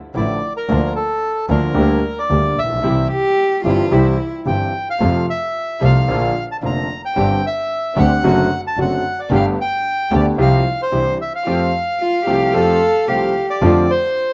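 A rubato 4/4 pulse at 111 BPM carries this passionate, playful tango excerpt in F major, where a reedy, bright bandoneon sings the melody up front over a clear, vintage concert grand piano, a rich, biting bowed double bass with vibrato, and very quiet, floating sul tasto string stabs, while an intimate cello adds a soft-attack second line at 3.1 s and again at 12.0 s, all in a rough home demo mix with light reverb.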